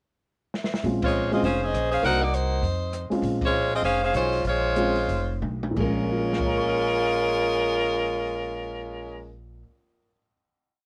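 A short, brassy and dramatic big band swing piece in Bb minor opens with a drum fill at 0.5 seconds from an acoustic jazz kit in a small room, its dark cymbals, medium-tuned snare and boomy kick sitting back in the mix with a rolled-off top, the sticks keeping time on the hi-hat. Piano and upright bass come in at 0.8 seconds: the dark baby grand offers mellow, short-sustained syncopated comping in rootless voicings over Bbm9, Cm7b5 and F5, while the woody pizzicato bass plays a two-feel line on steel strings. Up front, the edgy, close-miked saxophone section carries the motif-based melody in four-part block harmony with light vibrato, built from call phrases and punctuated by band accents. The tempo sits between 171 and 201 BPM with a swung eighth-note feel, then slows from 3.2 seconds into a final drum fill before the band settles on a closing Bbm7 chord at 5.8 seconds. Light reverb and the hazy sound of a home cassette recording give the whole performance an intimate, lo-fi character.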